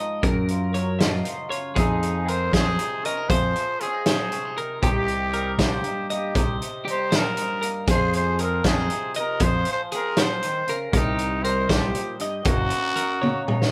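A raspy, growling trumpet with analog delay carries the wistful melody from 1.8 seconds in this intricate math rock and midwest emo passage at 78 BPM in 6/8, over bright twelve-string electric guitar arpeggios, a dark, twangy electric guitar with phaser, an overdriven picked bass, and a loose, gritty indie drum kit up front that closes on a fill at 13.2 seconds, all moving through Fm7 and Cm7 chords with a light live-room reverb.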